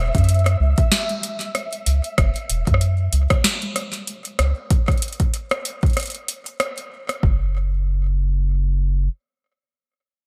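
IDM at 95 BPM in 4/4 with a light 16th-note swing, this short excerpt from a longer piece feels cerebral and eerie, opening on an F#5 chord that gives way to a chordless stretch at 4.7 seconds. A round, deep analog bass sits up front from the very start, its square, sine and triangle tones wave-folded into a dark, sustained voice with a fast attack, ranging from E1 to F#2 and carrying on alone after the drums drop out. For the first 2.2 seconds a flickering, grainy texture hovers on a high E5, its detuned triangle tone blurred by built-in reverb and a lush chorus. A booming analog drum machine supplies crisp snare, metallic hi-hats and rim clicks through a digital delay, playing alongside a soft, tape-warm electronic kick that sounds re-recorded in a small room. The drum machine runs until 7.2 seconds and the kick until about 7.4, after which the bass carries the closing section, all framed by light reverb and a bright 1980s-style digital production.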